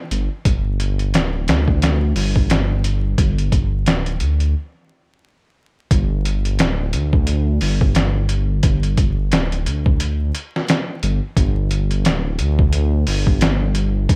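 Melancholic and hypnotic, this trip hop groove, cut from a longer piece, pairs a muffled, pitched-down sampler-style drum kit, with its thumpy kick, medium-tuned snare and hi-hat overdriven and re-recorded in a small room, with a dark, rumbling detuned saw bass whose unison voices beat against each other. Both parts sit up front in a dry mix under a layer of vinyl crackle, the sixteenths carrying a loose swing. The music halts between 4.5 and 5.9 seconds before the groove resumes in a new section that runs to 14.2 seconds.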